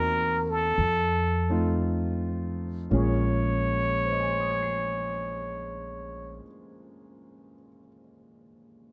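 Smoky and wistful, this short cut from a slow jazz ballad in Bb minor moves at 53-62 BPM with a swung 4/4 feel, easing back over its first 2.9 seconds as the harmony passes from Cm7b5 to F7 and settles on Bbm9. A bright, close-miked trumpet with a plunger mute carries the melody with a wah-wah tone, over a clear concert grand piano with deep bass and a woody, thumpy pizzicato upright bass on gut strings, all three up front in a dark, dry production. Trumpet and bass stop at 6.4 seconds, leaving the piano alone until 8.9 seconds.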